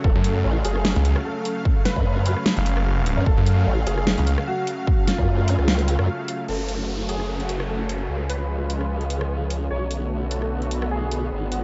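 A half-time 149 BPM groove with a light 16th-note swing drives this chaotic, menacing heavy wobble dubstep excerpt in F# harmonic minor, where a punchy electronic kick and a layered drum kit with a huge snare and metallic hats hit up front, a growling, distorted saw bass snarls until 4.4 s and the kick drops out at 5.3 s, while a detuned formant-sweep wobble bass churns beneath a lush, pumping supersaw pad that takes a filter sweep from 6.5 s alongside a downlifter, joined by a worn, intimate grand piano melody with audible action noise, a faint ethereal pad and chords moving from F#m to C# and Bm7.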